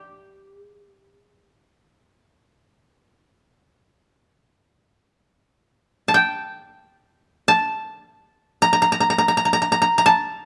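Japanese traditional chamber music in free time, this brief excerpt features a solo koto that carries the entire recording, its woody, dry tone placed up front and plucked with fingerpicks. The mood is meditative and austere, with the material heard twice across roughly 10.5 seconds. Close, detailed microphones capture the instrument's grain, and a light reverb gives it a touch of space.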